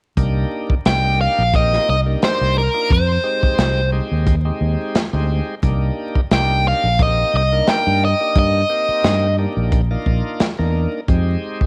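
Vinyl crackle, light reverb and small room ambience frame this brooding, smoky soul blues excerpt in C minor at 88 BPM, where an up-front, bright, picked overdriven electric guitar carries the melody from 0.9 to 9.4 seconds over a round fingered electric bass, a gritty, saturated breakbeat drum kit with a tight kick and rolled-off top, and a shouting tonewheel organ through a slow rotary speaker, the harmony moving between Cm7 and a rootless Fm7.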